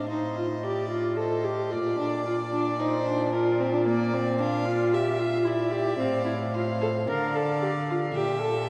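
Spirited and lively, this excerpt from a quick classical-period string quartet movement in Bb major moves at 112 BPM with a rubato feel, as a dark, distant first violin carries the melody over a close, airy-bowed second violin, a smooth-topped viola that sits up front in the accompaniment and a rich, close cello on the bass line, all bowed by single players with a period-style gut-string, reedy character and heard through a long, wet church reverb.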